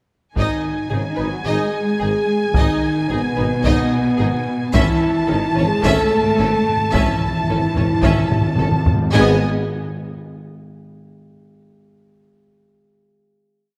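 A rich cello section opens at 0.3 s, bowed with vibrato and doubling the tune at the octave, and the full orchestra joins a moment later in this heroic, epic film score in G# phrygian at 109 BPM in a straight 4/4. High above, the symphonic violins carry a lush, sustained melody, while a close studio violin section and a distant viola section drive a rhythmic ostinato beneath it. Mellow French horns hold sustained chords, and the bowed double basses run a driving bass ostinato on G#1, doubled very quietly by a tuba. A taiko ensemble struck with hard sticks pounds a big drum ostinato, and timpani on G#2 add single strokes on bass notes, returning at 4.7 s for a fill as the harmony shifts from G# minor to A over G#, with a drum fill closing the theme. The orchestra settles on a final G# minor chord at 9.1 s, ringing out in a wet concert hall.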